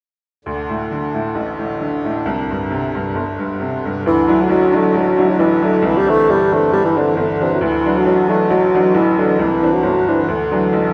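A dark, roomy bassoon carries the melody in this lively Celtic folk excerpt, entering at 4.1 seconds and playing solo up front with a light vibrato and a classical bearing. Beneath it, a bright, woody upright piano supplies the accompaniment from 0.5 seconds. Its worn, slightly detuned tone adds character to a swung two-beat feel. A reedy, breathing hand-pumped harmonium sets in at 0.4 seconds and holds a mellow low drone throughout. The harmony moves between chords built on D and C, and the bassoon's arrival opens a second section. The whole performance sits in a church or concert hall with a generous, lingering reverb.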